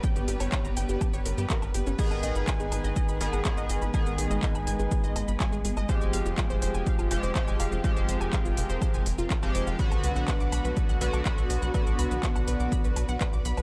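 A straight 4/4 pulse at 123 BPM drives this dark, hypnotic melodic techno excerpt, tuned to A4 = 436 Hz, where a punchy, tape-warm electronic kick and a small-room techno kit of smooth hi-hats, handclaps, shaker, woodblock and crash cymbal sit under a tight, wave-folded sequencer bass arriving at 0.2 s, while a lush, detuned unison pluck spins pumping arpeggios through analog delay, an edgy sync-sweep polysynth with a nasal, chorused bite stabs chords from 2.0 s to 12.9 s, a cloudy granular pad drifts in the background, and a very quiet, bowed studio string section holds sustained chords over a G, G#m, Fmadd9 and Bm progression in a dry, gritty recording.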